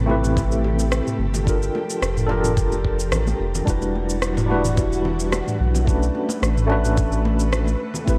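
A mellow, slightly out-of-tune tine electric piano with medium tremolo, digital delay and shimmer reverb opens this relaxed sunset chillout excerpt at 109 BPM, alongside a silky string machine holding sustained chords through ensemble chorus and a round, nasal analog bass sitting up front. Ringing, high-tuned congas in the background, a smooth, tape-warm electronic R&B kit with rim click, shaker and toms, and a gritty, overdriven electronic kick drum entering at 0.4 s carry a lightly swung 4/4 groove. Minor ninth chords drift from Am9 through Gm9, Em9 and Bm9 in a dark production bathed in lush hall reverb.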